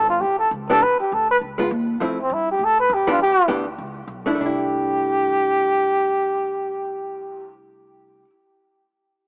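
Playful and sophisticated, this short cut from a longer small-group swing and bop piece moves at a brisk 202 BPM in 4/4 with a swung eighth-note feel, centered in C major and tuned slightly flat of standard pitch. A breathy trumpet carries the melody from the start, its dark, whispered tone shaped by vibrato, soft attacks and scooped notes, sitting intimately up front in the mix while also sounding somewhat distant and roomy. Underneath, a pizzicato upright bass with steel strings gives a woody, growly, thumpy low end, sitting well back in the balance. A clean, compressed vintage hollow-body electric guitar joins at 0.7 seconds with picked accompaniment, its dark tone placed forward. The harmony moves quickly through colorful chords such as A7, Db7, Fmaj7 and Bm11 before a new section arrives on C69 at 4.4 seconds. Light studio reverb surrounds a rough home-demo mix with a small-speaker character.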